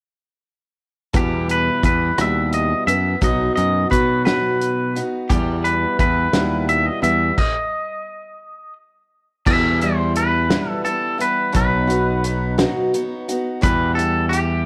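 Wistful and dusty, this short folk rock and heartland rock passage in 6/8 at 58 BPM in E harmonic minor pairs a clean, compressed twangy electric guitar melody with picked steel-string acoustic guitar, a bright, direct picked electric bass and a natural country drum kit with a fat snare and punchy kick, all up front in a small room with light reverb, as the band drops into a full stop from 7.4 to 9.5 seconds before returning.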